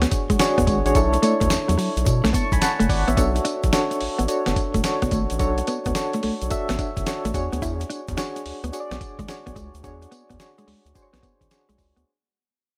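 A confident, bouncy new jack swing groove in B dorian opens at once, with soft electric-piano-like synth keys, mellow electric guitar, round analog bass, a dusty soul sampler-style drum kit and a tube shaker all playing from the first second. The gritty, compressed drums sit up front at 108 BPM with a 16th-note swing, pairing a thumpy kick and fat snare with hi-hat and tambourine, while the grainy shaker stays in the background. Beneath them, the deep analog bass has a sustained, evolving tone. The chorused, tremolo-tinged keys offer gentle, decaying accompaniment over a Bm11 chord, and the dark, clean guitar plays a compact riff with a subtle chorus. From 3.2 seconds the harmony moves to Bm7 and then to E13 at 7.3 seconds as the whole dry-sounding excerpt fades out, ending at 12.1 seconds.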